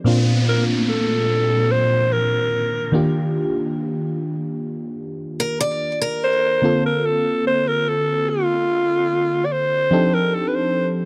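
A straight 4/4 pulse at 73 BPM sets an unhurried R&B groove, its mood sensual and longing, in this brief cut from a longer piece. An FM electric piano carries the accompaniment throughout, its warbling, vintage tone with a noise layer and phaser sitting up front over chords moving from Bbmaj7 through Ebmaj9 and Bbmaj7/D to F13. A breathy alto saxophone takes the solo melody from 0.5 seconds, raspy and gritty yet smooth on top, with vibrato and a touch of delay giving its pop-style phrasing a punchy presence. An electronic downlifter sweeps beneath the opening bars, and a picked steel-string acoustic guitar adds bright, boxy parlour arpeggios with delay between 5.4 and 6.6 seconds. The dark production keeps the room dry and close, so each part sits intimately near the listener.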